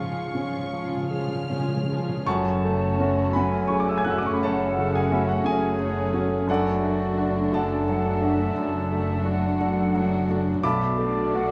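A tragic, brooding romantic classical movement for piano and orchestra in F# minor, unfolding in a slow, rubato 12/8 at around 50-60 BPM, cut from a longer piece. A clear, intimate baby grand carries the melody up front with long sustain and audible action noise, shadowed by veiled con sordino violins, while a punchy cor anglais, violas, cellos and a brief hard-mallet timpani fill open the passage. At 2.3 seconds a pure flute section, a smooth clarinet, a mellow bassoon and double basses join, and a distant, dark French horn section adds very quiet sustained chords from 3.0 seconds, all bathed in a wet scoring-stage reverb.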